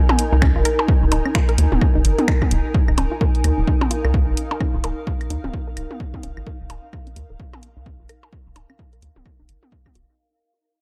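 This sparse, clinical minimal techno excerpt at 129 BPM in 4/4 with a 16th-note swing opens on a cloudy, evolving granular pad drifting through its reverb. It is joined in quick succession by tape-warm electronic toms, blips and claves trailing dub echo, then an overdriven techno kit of finger snaps and hi-hat. Next come a rubbery square bass pumping over an Ebsus4 and a hollow, detuned square pluck riff with chorus and digital delay tucked in the background. Finally a punchy, up-front electronic kick arrives, all within a dark, dry production that fades out across its 10.2 seconds as filter sweeps move over the bass and pluck.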